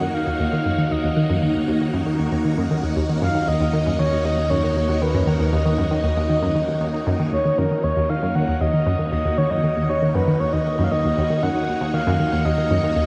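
A steady, straight 4/4 pulse drives this hypnotic, cosmic slice of sequencer-based space music, cut from a longer piece. Up front, a round, detuned analog pluck repeats a low riff with a fast attack and short decay, dressed in chorus, tape echo and shimmer reverb, while a filter sweep runs over the arpeggiated synth sound for the first 7.3 seconds. A breathy, flute-like lead carries the melody with gentle vibrato, a touch of vintage 12-bit sampler grit, chorus, tape echo and shimmer reverb, floating above the swirling, bright sustained chords of a phased string machine. Beneath them, a nasal, evolving analog drone holds the bass note in the background, and a faint, airy wind-like noise texture drifts through the opening section until it stops at 7.3 seconds, when the second section begins. The production is dark and soaked in a huge, long-tailed ambient reverb.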